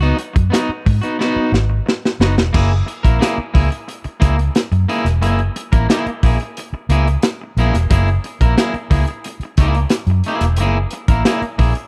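A dry, close 1970s-style studio sound frames this gritty, playful funk excerpt, where a crunchy, saturated breakbeat kit with dark cymbals and a tight kick plays a drum fill from 1.2 to 2.5 seconds, a round, foam-muted fingered electric bass sits up front, and a twangy electric guitar at the edge of break-up adds spring-reverbed accompaniment as the harmony moves from a rootless C#9sus4 to F#9.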